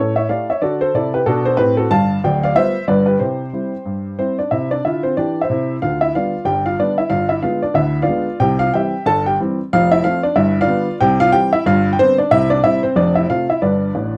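Swinging at 185 BPM in 4/4, this playful stride jazz excerpt in C major features a solo upright piano, woody and intimate with audible action noise, set up front in a dark production with light reverb, moving through a turnaround of dominant chords into C before shifting into a new section at 4.5 seconds and closing with a fill at 13.9 seconds.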